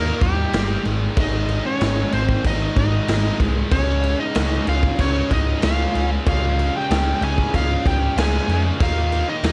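A heavy, driving hard rock excerpt at 94 BPM opens on a smooth overdriven lead guitar carrying the melody with slapback echo, a fuzz lead guitar tracing a second line beneath it, a compressed, double-tracked distorted guitar riff and two scooped high-gain guitars (one very quiet) in the background, all over a growly, up-front overdriven picked bass, before a raw garage drum kit with a punchy kick, crash cymbal, medium-tuned snare and a saturated, gritty, rolled-off top joins at 0.2 seconds, moving through Eb, Ab and Db in a small room with light reverb.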